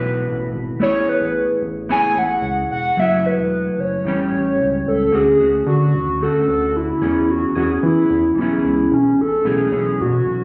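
Indie pop with a bedroom pop haze, this short cut from a longer piece moves at 111 BPM in a straight 4/4, nostalgic and dreamy throughout, tuned slightly flat to A4 = 438 Hz. A warbling lead sits up front in the mix and carries the melody from C#4 to G#5, its square-and-sawtooth tone thickened by a sub octave and dressed in lush chorus and a slapback echo. Beneath it, a mellow, clean electric guitar played with the fingers supplies dark accompaniment, shimmering with its own chorus and a vibrato effect. A round analog bass, deep and detuned with a fast attack, sustains low notes between E1 and E3. The harmony drifts through jazzy colors such as Amaj9 and F#m7, then settles into E mixolydian at 5.1 s, passing from Dmaj7 to E6 and ending on B9sus4 at 9.5 s. A moderate spring reverb and digital ambience, along with the intimate feel of a phone recording in the room and compression, give the whole piece a soft, homemade glow.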